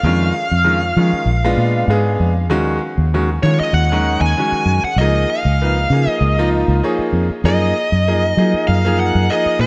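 Glossy 1980s-style digital production bathed in lush hall reverb frames this slick, bright electric jazz fusion fragment with a light sixteenth-note swing, where a bluesy, distorted, picked lead guitar carries the melody over brilliant, open grand piano chords that slip in a short fill at 6.5 seconds, with a round, dark, foam-muted fingered electric bass sitting up front beneath them.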